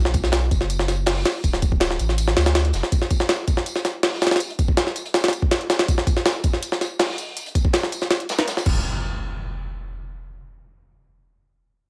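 A straight 4/4 jungle and drum and bass groove drives this dark, nostalgic excerpt from a longer piece. Up front, a compressed, pitched-up sampler-style kit supplies a thumpy kick, a high-tuned snare, hi-hat and crash, with tape-tinged grit and a small room around it. Behind it sits a second breakbeat kit of acoustic hi-hat, snare and tambourine, saturated and mid-forward with a rolled-off top, thinned by high-pass filtering and set in a small studio room. A deep, round dub sub bass with a soft triangle-and-square tone holds sustained notes under the opening until 2.8 seconds, then returns only briefly near the end. Once the drums stop at 8.7 seconds, an electronic impact hits up front and carries on until 10.1 seconds, while studio reverb colours the recording as a whole.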